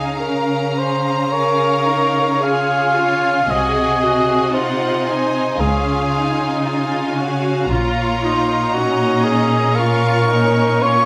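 A classical slow romantic movement for symphony orchestra, this brief passage unfolds with a tender, warm mood and a flexible rubato feel in 4/4. A clear, even violin section carries the high melody with smooth vibrato, while a mellow, close-miked cor anglais sits up front with a second line, joined by a lush, rich violin section whose tone stays focused and smooth on top. Underneath, a distant yet up-front cello section and a warm, smooth double bass section shape the bass, the basses dropping out at 8.7 seconds. A distant viola section enters at 1.3 seconds with bowed accompaniment, filling the middle of the texture. The harmony moves gently from Db through Ab7/C back to Db before settling on Bbm, all held in a moderate recital hall reverb that lends the strings and reed an airy glow. The passage is cut from a longer piece.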